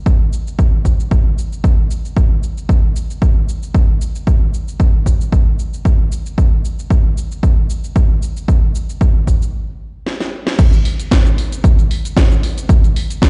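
Nu-disco in a groovy, sensual mood at 114 BPM with a light sixteenth-note swing, this fragment from a longer piece pairs an up-front, punchy, tape-warm electronic kick drum with a layered house kit of cabasa, crash cymbal, hi-hat and cracking snare re-recorded in a small room. The drums run under a filter sweep through the whole first section, while a stop at 9.5 seconds and a fill at 10.1 seconds lead into the drop at 10.6 seconds. All of it is heard as if through a big sound system in a bare room with a large studio reverb and a dull, rolled-off top end.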